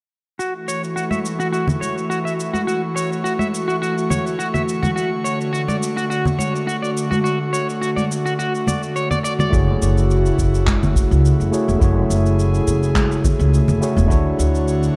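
A dark, lightly reverberant production with a digital ambience frames this smooth, blissful sunset chillout excerpt at 105 BPM, cut from a longer piece and swung gently on the sixteenths. From 0.4 seconds a soft, detuned, breathy pad with chorus holds sustained chords over F#m7 and Dmaj7. It is joined by up-front picked clean electric guitar arpeggios softened by a low-pass filter and delay, and by a gritty tape-toned electronic shaker and handclaps. Bright, close, dry congas enter at 1.1 seconds. At 9.5 seconds the guitar stops as an overdriven tine electric piano through a combo amp with delay, a woody, growly pizzicato upright bass and a deep overdriven electronic kick re-recorded in a large room come in.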